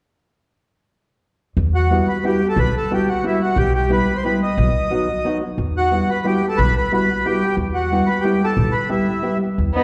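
A reverberant concert-hall ambience surrounds this brief musette in 3/4 at 180 BPM, its whirling, bittersweet mood set in E harmonic minor with tuning at A4 = 437 Hz. The reedy, dark accordion carries the melody up front from 1.7 seconds, its full, smooth tone ranging from D#4 to D#5. Beneath it, a clean, fingered hollow-body electric guitar fills in the accompaniment, while a pizzicato upright bass gives a woody, thumpy foundation between B1 and E2. The harmony moves through Emadd9, Em/B and B before returning to Emadd9 and settling on Em. At 9.7 seconds a single bowed violin slips in on B3 with expressive vibrato and portamento just as the passage is cut off.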